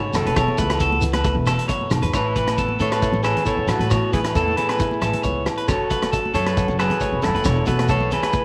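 A dark, fingerpicked flamenco guitar in the background and a slightly broken-up electric guitar playing spring-reverbed arpeggios open this sunny highlife guitar band fragment at 135 BPM in A major. They are joined at once by a woody, thumpy pizzicato upright bass, a vintage drum kit with hi-hat, punchy kick and rim click, distant ringing agogo bells, damped hard-hand congas and a grainy shekere. A twangy, up-front electric lead melody with spring reverb enters at 0.2 seconds, and a drum fill at 1.8 seconds carries the band from Esus4 into Asus2 before the chord returns to Esus4 at 5.7 seconds.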